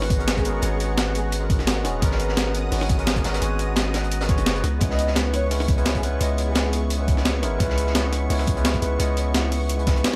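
A gently swung breakbeat drives this dreamy, melancholic liquid drum and bass excerpt: a compressed, sampler-style kit with a gritty, high-tuned snare and hi-hats runs throughout, backed by a thumpy electronic kick and, further back, a second crunchy kit with a dark, saturated, rolled-off sound and a small-room character, all three carrying studio reverb. Underneath, a deep, sine-like 808-style bass sits up front with long, decaying notes that hold until about 10.0 seconds. A bright, barky tine electric piano played through a combo amp carries the accompaniment, touched with subtle chorus and tape echo. Behind it, a thick, detuned unison pad sustains the harmony with a slow attack, colored by chorus, phaser and sidechain pumping. A soft, breathy, flute-like synth lead with vibrato and a sub octave surfaces briefly at 0.4 seconds and again from 4.9 to 6.8 seconds, drifting through ensemble chorus and delay. 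The harmony moves from G#m11 to C#m7, and the overall mix is dry.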